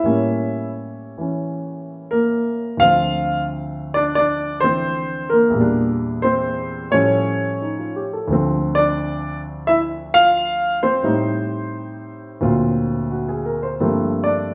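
Swinging and moody, this solo jazz piano piece moves in a relaxed 4/4 with a lilting eighth-note swing. A concert grand carries everything alone, close and up front, with a deep bass, short sustain and a warm body ranging from D2 to F5. The opening passage runs through dark, tense harmony such as A7b9, Dm7 and Aaug7, and a second passage begins at 8.3 seconds, moving through Am7b5 and D7alt before settling on Gm11 at 13.8 seconds. A wet stone-room reverb surrounds the piano, and the top end is capped at 8.0 kHz, giving the sound a dusky, live-in-the-room character. Cut from a longer performance, the fragment ends after about 14.5 seconds.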